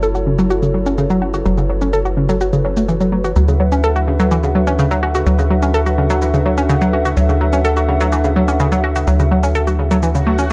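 Melodic techno at 126 BPM with a hypnotic, cinematic mood, cut from a longer piece, moving from F#m to D over a tight, punchy sequencer bass, a faint electronic shaker dulled by a low-pass filter, and a round, bright analog pluck playing arpeggios through chorus and tape echo with a filter sweep running throughout. Beneath them a dark, detuned analog pad holds sustained chords with chorus and vintage 12-bit sampler grit, while a warbling, nostalgic tape-like pad with chorus and built-in reverb sits in the background. An electronic swell arrives at 10.1 seconds, and the echo-heavy mix has light reverb and a rolled-off top end.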